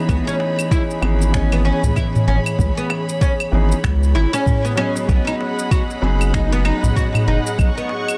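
Organic downtempo in C# minor at 96 BPM with a swung 16th feel, this short mystical, earthy excerpt moves from C#m7 to B6 at 5.1 seconds. A felt-muted upright piano with audible action noise plays soft accompaniment through a delay, while dark, lush bowed strings hold sustained chords and a woody, plectrum-plucked fretless oud spins delayed arpeggios. Underneath, a round analog bass sits up front with sidechain pumping, joined by an overdriven electronic kick, tape-tinged electronic claves, shaker and finger snaps, and a clay-shelled darbuka in the background, all in a dense, heavily limited modern master.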